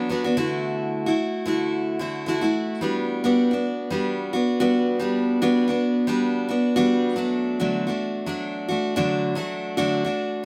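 A picked steel-string acoustic guitar carries this short pop excerpt entirely on its own, its jumbo body giving a full-bodied, up-front tone with a touch of finger squeak audible in the close, detailed miking. The mood is carefree yet heartfelt, set at 110 BPM in 4/4 with a gentle swing on the sixteenth notes. In G major and tuned slightly below standard pitch, the guitar stays in a middle register from D3 to F#4. The harmony moves from Dadd9 to Gmaj7, with the second section beginning at 2.8 seconds, before settling on D at 7.2 seconds. Light reverb adds a little air around the intimate sound, and the clip is cut from a longer piece.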